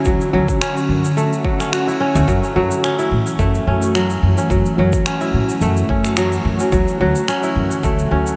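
A gently swung groove of overdriven electronic kick and gritty shaker with finger snaps, the latter re-recorded in a large room, sets a mystical, earthy mood in this short organic downtempo passage cut from a longer piece. Up front, a crisp, ringing kora spins fingerpicked arpeggios through a diffuse ambient delay, while a woody pizzicato upright bass underpins it with sidechain pumping. Behind them, an ethereal, mellow pad of detuned sawtooth and triangle tones with a noise layer holds slow-attack chords, colored by ensemble chorus, phaser and its own reverb, and it breathes with the same sidechain pumping. The deep, layered kick drops out between 1.7 and 2.3 seconds as a very quiet electronic swell sounds beneath the mix, and the harmony moves from Dmaj7 to F#m7 before returning to Dmaj7. A huge ambient reverb soaks the whole blend in a dreamy haze.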